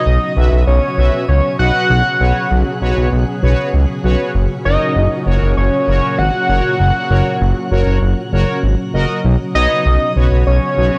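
Melancholic and nocturnal, this short pop passage, cut from a longer piece, moves at an unhurried 98 BPM in a straight 4/4. A fat, detuned analog lead carries the melody up front from the opening second, its sawtooth-and-square tone mellowed with vibrato and dressed in chorus, shimmer reverb and tape echo. Beneath it, a smooth synth bass sits prominently from 0.1 seconds, its rounded, sustained low end anchoring the harmony as it shifts from Bsus2 to F# at 4.3 seconds and back to Bsus2 at 9.2 seconds. A sweeping resonant pad holds airy, evolving chords with a slow attack, a filter swell and a bright, noisy edge, while analog synth brass enters softly at 0.4 seconds with bold, wave-folded accompaniment shaped by a filter sweep. The whole has a dry, gritty hardware character with cassette-tape and transformer saturation under only a light room reverb.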